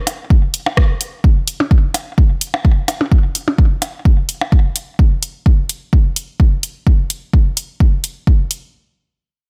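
Hi-hat and rim clicks from a punchy, overdriven analog drum machine open this quirky, clinical minimal techno fragment at 128 BPM in 4/4 with a light 16th-note swing, together with produced percussion blips trailing tape echo until 4.5 seconds, while a dry, up-front electronic kick joins almost at once to drive underneath as the loudest element in a tight, nearly reverb-free sound.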